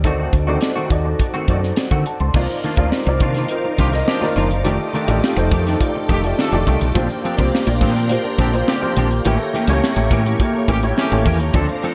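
A woody, round fretless bass sits up front with a punchy, direct tone colored by analog chorus, anchoring this slick, urban slice of polished 1980s jazz-funk pop in a straight 4/4. A crisp, airy fusion kit, with a high-tuned snare, tight kick, hi-hat and crash, drives alongside it. A grand piano treated with tube saturation and ensemble chorus carries the accompaniment, while a clean, compressed semi-hollow guitar plays a fingered riff. Very quiet congas with a thick-skinned, close and dry sound join at 2.3 seconds, and a shimmering vintage string machine of sawtooth violins arrives at 2.4 seconds, its soft-attack chords bright in the background under phaser and chorus. A clear horn section enters at 3.8 seconds with a loose, very quiet second line full of vibrato, as the harmony moves through lush extended chords from D7b9 through Cm11, F13 and Bb69 to A7b9. Light reverb and studio ambience give the production a dark, warm finish in this excerpt cut from a longer piece.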